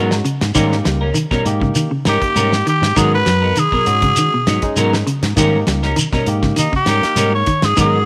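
A short cut from a longer funky, defiant afrobeat piece opens on a barky, lightly overdriven tine electric piano through a combo amp, a dark, clean semi-hollow guitar playing fingered stabs through analog chorus, and a warm, direct fingered electric bass, all circling G#m9 and D#7. A dry, damped 70s drum kit with a fat snare, tight kick and hi-hat joins almost at once, alongside a grainy, mellow shekere and a second semi-hollow guitar picking clean, low arpeggios. At 2.1 seconds a growling tenor saxophone takes the solo up front, bright and raspy with a light vibrato and a gritty, pop-style edge. In the final moments, at 7.8 seconds, a very quiet pair of woody claves taps in close and dry. Light reverb gives the straight-feel groove a touch of space.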